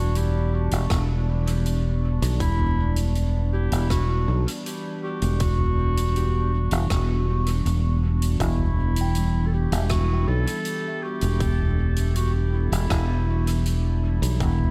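A small-room ambience frames this deep, meditative ambient dub excerpt, which rests on a single Em9 chord in E minor at 80 BPM in a straight 4/4, tuned to A4 = 438 Hz. Up front, a growly, punchy fingered electric bass holds the low end. Beneath it, a nostalgic, lo-fi pad wavers with a detuned, slow-attack haze, thickened by chorus, its own reverb and the grit of a vintage 12-bit sampler. A mellow clarinet carries the melody in a classical style, its line trailed by tape echo. Soft-mallet drums on hi-hat, rim click and toms sit low in the mix with dub echo, and a tight electronic kick joins from the background at 0.9 seconds. From 9.0 to 13.1 seconds, a woody, ringing kalimba adds faint arpeggios with its own tape echo.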